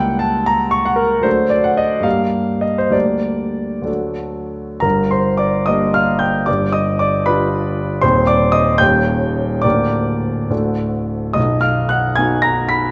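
Bittersweet and passionate, this romantic character piece for solo piano unfolds in G minor at a flexible, rubato pace of 60-80 BPM, counted in dotted quarters within a lilting 6/8. A clear concert grand carries the whole 12.9-second fragment of a longer work, reaching from the deep bass of B0 up to B6, and its up-front, intimate presence lets the audible action noise of the instrument come through. The opening phrase starts on a tense C#dim7 before settling through D and G minor, and a new passage arrives at 4.8 s, moving through G7, C minor over E-flat and E-flat 7. It closes by turning from D to an unexpected B major at 11.4 s. The polished tone rings with long sustain into a wet recital hall reverb that lingers around each chord.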